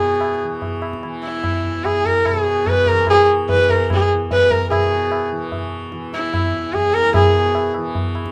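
Hindustani classical music, radiant and meditative at 147 BPM in 3/4, cut from a longer piece, where a clear, nasal sarangi with light vibrato and gliding portamento sings up front over a softly plucked, buzzing tanpura drone and a high-tuned, close and dry tabla entering at 0.2 seconds, all set in a moderate studio reverb.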